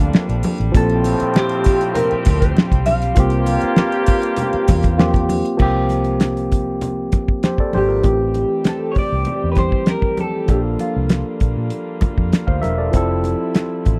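A dry, close, 1970s-style studio sound frames this lush, smooth soul passage, cut from a longer piece, with a damped drum kit up front, its fat snare and tight kick under a rolled-off top, and a round, foam-muted fingered bass beneath. A barky, lightly overdriven tine electric piano carries the accompaniment throughout alongside mellow, stopped French horns holding sustained chords, while a muted trombone section adds nasal stabs until 5.3 seconds, ringing congas sit very quiet, and a shimmering triangle lingers in the background. Over this, a slightly broken-up, lo-fi electric guitar through a small old amp plays the melody with a phaser in two phrases, the second beginning at 7.8 seconds.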